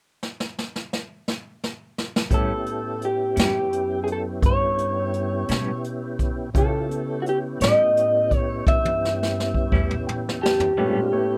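Slow blues in a straight 12/8, rollicking and gritty, cut from a longer piece with light reverb and a rough home-demo mix. A jazz kit played with brushes sits up front in a small, natural-sounding room, with a boomy kick and medium-tuned snare, and it opens alone with a fill before the full band enters at 2.3 seconds on an A7 chord. The electric slide guitar carries the melody up front, its tone slightly broken-up and compressed, while a clean, twangy picked electric guitar with tremolo and a pizzicato upright bass, woody, growly and thumpy, fill out the lower end. A smooth tonewheel organ holds sustained chords with chorus vibrato, key click and a slow rotary speaker, and a clear, polished baby grand piano adds accompaniment from the background. Near the close, the drums play another fill and the piano adds a fill of its own at 9.7 seconds before the harmony lands on A9.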